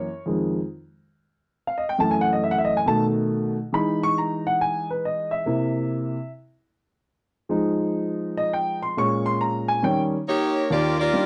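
A dark, warm production with a touch of moderate studio reverb frames this brassy, swinging jazz fragment at 138 BPM, where a woody upright piano with long sustain carries the accompaniment through changes like Fm7, Emaj7 and C7 before a tight saxophone section with vibrato enters up front on the melody at 10.3 s, shortly before the harmony settles on Ebmaj9.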